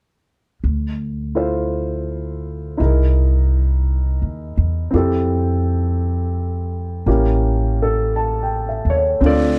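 A dry, close-sounding excerpt of an intimate, melancholic jazz ballad in D minor at a slow 56 BPM with a swung feel, where a thumpy, up-front pizzicato upright bass enters at 0.6 seconds, a woody, natural upright piano joins at 1.4 seconds to accompany over Dm7, C7alt, Fmaj7 and A7b9, and a faint, airy brushed snare drum arrives only at 9.2 seconds.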